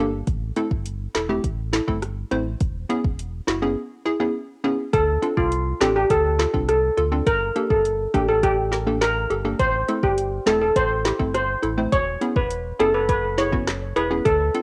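Dancehall at 103 BPM with a tough, sultry mood: a hollow, warbling square-wave pluck with chorus and a deep, sustained sub bass with octave carry the Am to E6 changes, an electronic afro-pop drum kit with a deep kick, a woody snare, metallic hi-hats, handclaps and rim clicks adds a tape-warm groove, and a bright, shimmering steel pan lead enters at 4.9 seconds over Dm7 and Gmadd9, all in a moderately reverberant home cassette recording cut from a longer piece.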